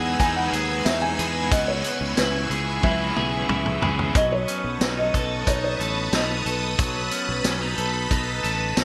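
Blissful and ethereal, this dream pop excerpt opens with a muted, boxy felt-muted upright piano melody carrying delay, over a lush string machine full ensemble with phaser and ensemble chorus, an electric guitar at the edge of break-up playing twangy arpeggios through lush chorus and delay, and a growly sustaining fretless electric bass. A double-tracked crunchy overdriven guitar with tremolo and analog chorus sits in the background until 4.2 seconds, while a punchy vintage drum kit with a high-tuned snare, tambourine and gated reverb enters at 0.2 seconds and plays a fill from 2.8 seconds. The bright 1980s-style digital production and moderate plate reverb frame the chords moving from Emaj7 and C#m7 to B9 in the second section.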